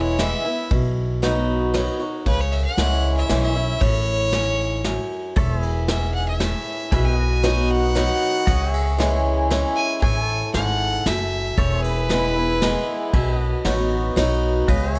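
A bright, earthy fiddle with light vibrato carries the melody up front in this sunny, down-home honky-tonk and classic country waltz, a cut from a longer piece, playing until 13.3 seconds. Beneath it, a boxy, picked swing-style acoustic guitar and a woody, thumpy gut-string upright bass hold the ground, while a distant, roomy brush kit adds punchy kick, snare and ride. At 5.4 seconds a clean, compressed pedal steel guitar slides in with sustained chords and volume swells, and the overall sound stays dry.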